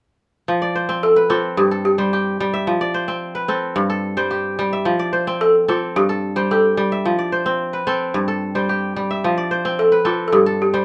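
A light reverb gives this flowing, warm West African traditional passage, cut from a longer piece, a gentle sense of space. A crisp, ringing fingerpicked kora sits up front from 0.5 seconds, spinning arpeggios over a steady alternation of F and Gsus24. At 1.0 seconds a woody, round balafon, played with rubber mallets and sounding dry and airy, carries the melody in a narrow upper-middle range.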